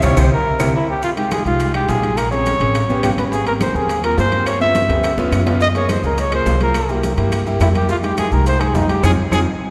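A dark, breathy trumpet with light vibrato leads this sophisticated, driving Afro-Cuban jazz excerpt in F minor at 210 BPM, carried by a thumpy, woody pizzicato upright bass and a natural concert grand piano with deep bass, while congas, ringing metal-shell timbales, grainy maracas, tight high-tuned cowbell and bongos, and faint woody claves fill out the percussion, with drum fills and band accents marking the opening second and the close, all within a lush church reverb.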